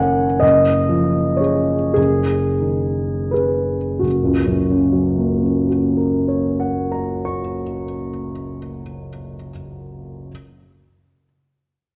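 A clear grand piano, polished and up front with audible action noise and long sustain, plays alone through this short excerpt of impressionist classical music, running from 0.0 to 10.3 seconds. The mood is hazy and dreamy, set in F# major and 6/8 at a very slow 26-48 BPM counted in dotted quarters, with a rubato feel that slows down over the first 4.0 seconds. The harmony drifts from F#sus2 through C#sus24 over an F# bass before settling on a plain F# chord at 4.0 seconds, where a second section begins. The piano spans a broad range from F#1 to C#6, tuned slightly low to A4 = 436 Hz. A wet recital hall reverb surrounds the instrument, while a worn old cassette tape character adds warbling pitch drift that deepens the intimate, faded atmosphere.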